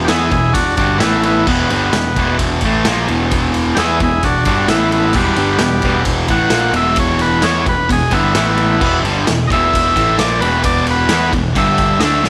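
Garage rock at 131 BPM in a straight 4/4, raw and rowdy, with a buzzy overdriven combo organ taking a solo melody over a double-tracked fuzz guitar riff, a growling picked bass with amped overdrive grit, and a punchy, gritty drum kit of kick, snare, ride and crash that joins at 0.1 seconds in a pumping stone room, all cut from a longer piece with light studio reverb.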